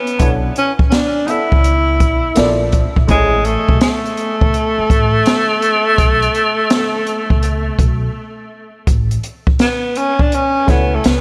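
Jazz-hop at a relaxed 83 BPM in A major, this cool, swung excerpt sets a breathy, whispered tenor saxophone with tape echo and scooped notes over an open jazz kit with a high-tuned snare and boomy kick, plus a thumpy pizzicato upright bass. A worn, slightly detuned upright piano with subtle chorus plays until 3.4 seconds and returns briefly at 10.7 seconds, while the harmony moves from Bm11 through Bbmaj7 and A to Bsus2 as a break begins at 6.0 seconds. The saxophone takes a solo from 8.9 seconds over an A6 chord, all within a dreamy mix soaked in lush hall reverb.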